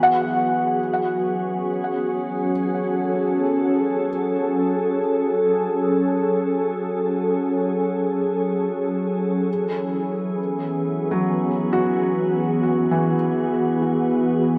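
Peaceful and luminous, this ambient excerpt in free time pairs a glassy, ethereal FM pad holding slow-attack sustained chords through ensemble chorus with a soft, felt-muted upright piano whose intimate arpeggios carry audible action noise and a trail of delay, both up front in a lush hall reverb as the harmony moves from F#m11 to Eadd9 at 9.5 seconds.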